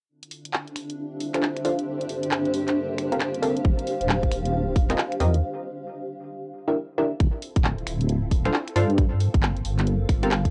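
Tape-warmed finger snaps, handclaps and hi-hat open this skippy, bouncy two-step UK garage excerpt, joined by a silky, mellow string machine with phaser and ensemble chorus in the background and a cloudy, evolving granular pad up front, then bright, punchy chord stabs with chorus and tape echo from 1.3 s, before a deep, dark wobble bass and a tight, layered electronic kick arrive together at 3.6 s, all within a moderately reverberant home cassette recording.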